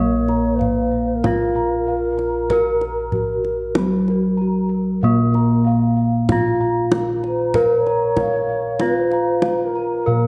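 Stately and shimmering, this short passage of Javanese gamelan moves at an unhurried 48 BPM in 4/4, set in a Bb pelog tuning. A bronze metallophone struck with a wooden mallet carries the melody up front, its ringing tone sitting forward in the mix, while a hollow bass bansuri traces a soft second line with vibrato and rolled-off highs. Beneath them, bossed gongs hold the bass with a round, beating resonance, and a higher set of bossed gongs, played with padded beaters, weaves mellow arpeggios. A second metallophone adds its own arpeggios with padded disc mallets, its paired tuning producing airy, shimmering beats. The kendang enters at 0.3 seconds with a tight, close and dry sound, all within a dark production and a moderate recital hall reverb that lends the piece, cut from a longer work, a gentle sense of space.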